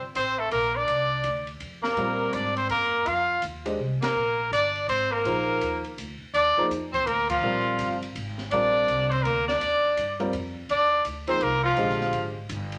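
Bathed in a wet club reverb, this searching, spiritual modal jazz excerpt swings in 3/4 as a brilliant, forceful trumpet carries the melody up front with light vibrato and scooped notes over a bright tenor saxophone second line, a woody, thumpy pizzicato upright bass on gut strings, and an open jazz drum kit with a high-tuned snare and boomy kick, joined at 2.0 seconds by a smooth vintage grand piano, with band accents at 4.0 and 7.2 seconds.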